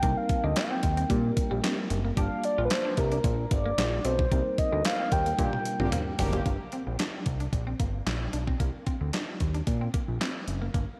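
A lush hall reverb gives this early-eighties boogie funk excerpt a big arena sound and a late-night, danceable mood. An overdriven 12-bit drum machine with a thumpy kick and handclaps sits up front beside a fat, detuned analog bass, while a round, horn-like synth lead carries the melody over a worn tine electric piano and a twangy, slightly broken-up electric guitar riff in the background. Bold, nasal analog synth brass joins during a drum fill at 5.4 seconds, and by 6.5 seconds the lead, piano and brass have dropped away, leaving drums, bass and guitar.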